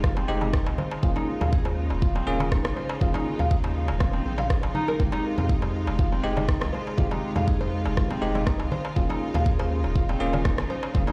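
Heard through a big sound system in a bare stone room, this hypnotic, spiritual afro house excerpt sets an up-front, deep electronic kick under a deep house kit of rim clicks and toms, with a crisp, close metal-shell darbuka played with soft hands joining at 0.2 seconds. A round, dark analog bass and a fingerpicked nylon-string guitar arpeggiating through a low-pass filter and dub echo move over Fm7 and Eb9sus4. Bell-like electric piano stabs, also with dub echo, play alongside distant, biting symphonic strings holding sustained chords, and the strings, guitar, piano and bass all pump with sidechain compression.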